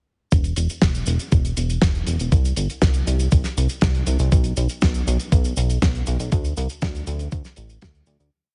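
Italo disco with a danceable, melodramatic feel, this short whole piece runs on a thumpy, tape-warm electronic kick holding four-on-the-floor, a dry, damped 70s drum kit adding a fat snare, closed hi-hat and cabasa in a disco machine beat, and a glossy, chorused synth bass driving eighth notes up front with a plucky pulse-and-sawtooth tone, all heard through a heavily compressed, radio-like mix with little reverb before a fade-out from 5.7 seconds.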